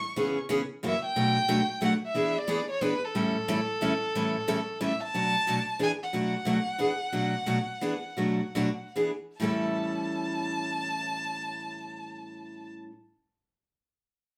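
Jazz in a swinging, charming 3/4 waltz, this short excerpt pairs an expressive bowed violin melody, soft in attack with vibrato and portamento, against a bright picked steel-string acoustic guitar accompaniment with audible finger squeak, both up front in a live-room sound with reverb as the music moves through a C#m7–F#7–Bm7–E7–A7 turn and slows from 7.1 to 9.4 seconds before settling on A7.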